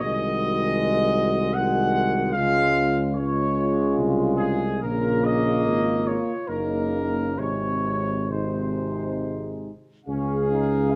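Close, detailed microphones catch this brass band in a recital hall with a moderate reverb, giving an intimate yet airy sound. The short excerpt is a lyrical, tender classical piece with a hymn-like character, moving in a flexible, rubato triple metre. A dark trumpet section carries the melody up front, its tone distant and roomy, while a French horn section sings a loose second line in the background. A clear trombone section with light vibrato and a mellow, smooth-topped euphonium fill out the accompaniment behind them. Underneath, the tuba plays the bass line up front, mellow and smooth-topped with light vibrato, and all five parts sound together from the opening to 11.0 seconds, with the harmony settling on a final chord at 10.1 seconds.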